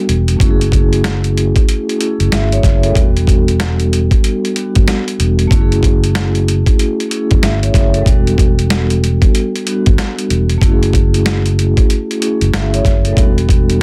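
A swung 94 BPM boom-bap groove drives this tough, dark hip-hop fragment, its gritty, overdriven sampler-style kit sitting up front with a thumpy kick, medium-tuned snare and hi-hat that sound re-recorded in a small room. A round, amped fingered electric bass holds the low end while a mellow vibraphone played with soft mallets rings out up front with motor vibrato, its vintage, band-limited tone carrying a cassette-tape haze as the harmony alternates between F#m7 and Em7. The mix is dry, dense and heavily limited.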